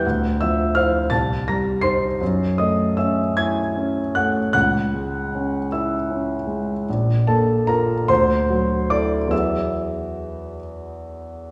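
In a rubato 6/8 lilt at 47-57 BPM, this serene, hazy impressionist solo piano fragment, cut from a longer piece and tuned to A4 = 438 Hz, drifts through rich chords from Dm9 and F#m9 to D9 and Eadd9 across a range of A#1 to C7, its clear, intimate grand heard up front with audible action noise inside a wet recital-hall reverb.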